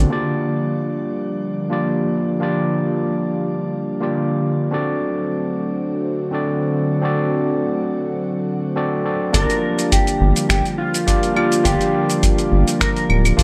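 A moderate room reverb and shimmering haze frame this smooth, relaxed sunset chillout piece at 104 BPM in G minor, where a barky, overdriven tine electric piano through a combo amp and a lush, detuned unison pad with chorus and a filter sweep drift over Gm7 and D7 until, at 9.3 s, a round, deep analog bass settles in beneath a dark, clean, fingered electric guitar melody with tape echo, a gritty, tape-warm sampler-style kit of cabasa, claves, finger snaps and hi-hat, and a dry electronic kick.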